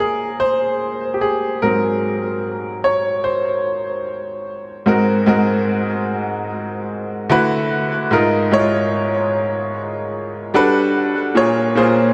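A straight 4/4 pulse carries this dreamy, romantic R&B piece, cut from a longer work, with a bright, worn grand piano playing alone and up front throughout, spanning Ab2 to Db5 under a diffuse ambient delay. Rich chords such as Bbm9, Ab9 and Gmaj9 drift by, with the piece moving into a new section at 4.9 seconds. A cathedral reverb with a long 4.9-second tail soaks the mix, lending it a hazy, floating quality.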